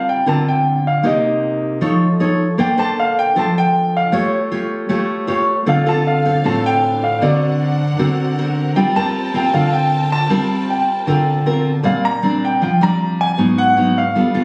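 A full-bodied, fingerpicked nylon-string guitar sits up front in this intimate, wistful bossa nova at 156 BPM in G minor, accompanying a natural-sounding grand piano melody, while a lush, vibrato-rich symphonic string section adds soft-edged bowed chords from 5.7 to 11.8 seconds, the mix carrying light reverb and an in-room phone-recording character.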